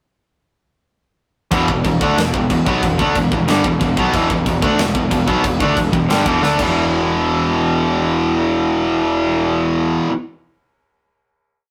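Heavy metal at 183 BPM in E minor, dark and aggressive, with two bright, picked electric guitars up front pounding out a distorted power-chord riff from 1.5 seconds, one of them high-gain, while a growly fuzz bass sits in the background driving eighth notes that double the guitar riff. A tight metal drum kit with an airy, polished big-room sound, bright china and crash cymbals, a medium-tuned snare and a tight kick plays a half-time groove, closing with a fill at 6.4 seconds that leads through D5 to E5 into a final hit ringing out to about 10 seconds. The whole short piece has the rough feel of a rehearsal-room recording with moderate reverb.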